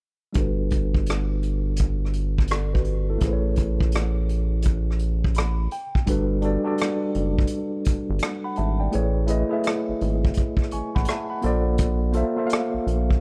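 A tine electric piano, worn and slightly out of tune behind a low-pass filter, opens this smooth neo-soul R&B excerpt at 84 BPM in G major, swinging lazily over Gmaj9 and Amaj9 chords while a filter sweep runs across it until 6.1 seconds, with a short piano fill arriving around 5.0 seconds. Beside it, a distant, roomy acoustic kit played with bundle sticks taps out hi-hat, rim click and a punchy kick, and a rubbery, hollow square-wave bass with a bouncy filter pluck sits low from 0.4 seconds. After a brief break at 5.7 seconds the progression returns and closes on Bbmaj9, all wrapped in small-room ambience.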